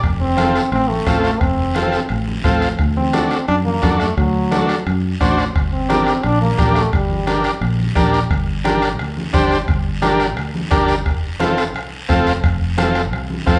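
Cumbia with a driving, passionate feel, this excerpt from a longer piece puts a bright, punchy trombone up front with light vibrato for a pop-style solo that runs from 0.2 to 7.6 seconds. A vintage, buzzy combo organ with heavy vibrato also sits up front, over a dark, round fingered electric bass, a compressed, saturated bombo played with a soft beater, ringing low-tuned congas in the background and a raspy guiro. The band sounds as if playing live together in one room, bathed in a lush studio reverb.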